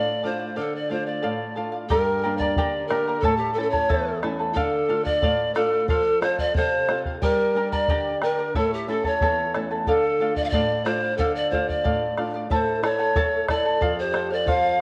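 Festive yet wistful, this excerpt of Andean folk moves at 90 BPM in a straight 2/4, set in D minor and tuned to A4 = 445 Hz. A breathy bamboo pan flute carries the melody up front with a straight, tongued tone and a chiff. Beneath it, a shimmering fingerpicked charango with double strings and a fingerpicked flamenco guitar, complete with finger squeak, supply the accompaniment over a progression that circles through Dm, Gm, A and F. A round, dry bombo joins at 1.9 seconds. At 12.5 seconds a large quena enters with a mellow, hollow second line, airy and close-miked, with vibrato and a crisp attack. The whole ensemble sits in a wet echo chamber reverb with small room ambience.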